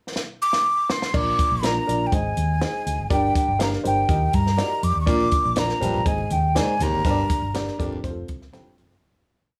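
A straight 4/4 backbeat soul groove at 122 BPM opens with a fill from a compact cocktail drum kit, its punchy kick, high-tuned snare and dark cymbals sitting dry and up front, before a round, hollow-body electric bass enters with a syncopated, melodic line full of chromatic approach notes beneath a worn, woody upright piano playing close-voiced quarter-note chords with grace notes. This joyful, danceable piece of 1960s-style soul in Bb major is led by an airy jazz flute with vibrato playing motif-based call phrases, joined at 5.1 seconds by a clear baritone saxophone adding low punctuation and a moment later by very quiet, saturated congas with a syncopated pattern. A light small-room reverb surrounds the group, and the track fades out from 7.0 seconds.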